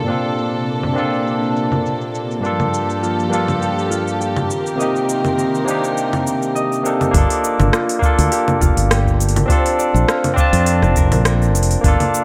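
A barky, clean tine electric piano sits up front through a combo amp with digital delay, carrying this smooth, wistful sunset chillout fragment over lightly swung 4/4 and Bbmaj9, Gm9 and Cm7 chords, with dark, bowed sul tasto strings holding soft-attack chords beneath it until 7.1 seconds. A produced R&B kit of congas, metallic overdriven hats, rim click and shaker runs under a filter sweep through the opening, while a thumb-plucked concert harp adds ringing, delayed arpeggios in the background from 3.0 seconds. At 7.1 seconds a round, punchy fretless bass and a deep analog electronic kick come in, all set in a moderate plate reverb with a bright 1980s-style digital sheen.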